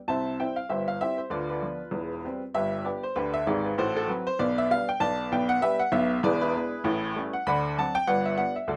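A woody, up-front upright piano plays solo stride jazz from 0.1 s, swinging playfully at a brisk 195 BPM in 4/4 with a long sustain and light reverb, moving from C major to G major at 5.0 s and running through a chain of E7, A7 and D7 chords from 6.2 s before landing on G in this short cut from a longer piece.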